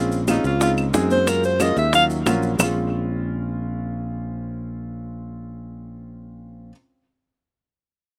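Fiery and sultry, this short Afro-Cuban jazz clip sets a clear, up-front alto saxophone solo carrying vibrato and slapback echo over an intimate concert grand with audible action noise, a growly fingered electric bass, round bongos, woody claves, thick-skinned congas and grainy, distant maracas, and once the percussion drops out at 2.7 seconds, the piano and bass carry the minor-key chords alone until 6.7 seconds in a dry outdoor setting.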